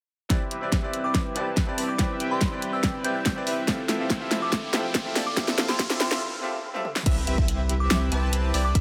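A punchy, layered electronic kick sits up front from 0.3 seconds in this playful, bright future bass excerpt at 142 BPM in a half-time 4/4 feel, joined by a pop drum kit with a fat snare, hi-hat, toms and crash cymbal, both re-recorded in a small room. Over a C major progression moving from Cmaj7 to Fmaj7, a smooth, detuned supersaw riff pumps with sidechain compression through a filter sweep. A brilliant, worn concert grand piano with audible action noise plays accompaniment in the background with delay. A very quiet, breathy pad holds sustained chords, and a crystalline, warbling FM bell carries the high melody with chorus and delay. The build-up adds a riser from 3.0 seconds, then a short break gives way to the drop at 7.1 seconds, marked by an impact. Here a deep, saturated sine sub bass arrives alongside lush, detuned unison pluck arpeggios with analog chorus and delay, all under a light reverb.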